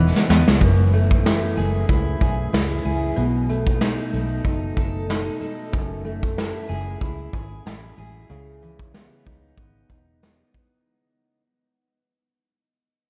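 Hazy and wistful, this lightly swung indie-pop and bedroom-pop excerpt at 94 BPM in F# dorian opens with a brief drum fill before fading out from 0.6 seconds, as an up-front, full-bodied fingerpicked jumbo acoustic guitar with fresh strings, subtle chorus and warbly pitch drift moves through C#m9, F#m9 and B7 over a dark, round, foam-muted electric bass and a roomy brush kit with a punchy kick, a rolled-off top and 12-bit sampler grit, in a dreamy mix soaked in long cathedral reverb.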